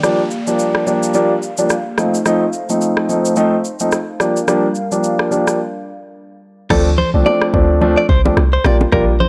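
A swung 4/4 groove at 108 BPM drives this joyful, romantic afrobeats fragment in Bb major, with an electronic deep house kit of deep kick, rim click, shaker and crash running beneath a concert grand piano that plays up-front accompaniment with long sustain. A hollow, flute-like pad with a soft attack and chorus sits dark in the background, its sustained chords pumping against the kick, while a downlifter sweeps faintly through the opening seconds. The harmony moves from Bb6 through F7 and Gm7 before a brief break at 5.6 seconds. At 6.7 seconds the pad drops out and the texture shifts to Dm7: a round, percussive log drum bass with a fast attack and saturated grit arrives alongside a clean, compressed, direct-recorded electric guitar riff and bright, close congas and bongos played with soft hands. The whole excerpt carries a dry, gritty hardware character wrapped in digital ambience.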